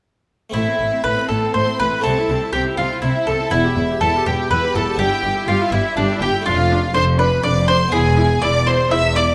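A moderate recital-hall reverb surrounds this stormy, driving baroque-style concerto movement in A minor, moving in a straight 3/4 at 122 BPM and cut from a longer piece. From 0.5 s, a bright, woody, up-front picked mandolin carries the melody, joined by a lush violin section with smooth vibrato that also plays the melody in a higher register, while a second violin section sits in the background with its own line. Distant violas and a dry, round, close-miked harpsichord fill in the accompaniment, and expressive, soft-attack cellos join intense, clear double basses on a bowed bass line that moves from Am through Em and Dm/F to a closing E chord.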